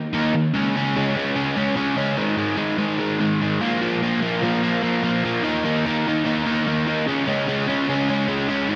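Swaggering and confident, this short rock excerpt at 147 BPM in straight 4/4 features a lone overdriven electric guitar, crunchy and double-tracked, picked up front with tape echo across its run from 0.0 to 8.8 seconds. The guitar moves through power-chord shapes on Eb, Db, Ab and Bb, cut from a longer piece. A lush hall reverb gives the whole sound a big arena scale.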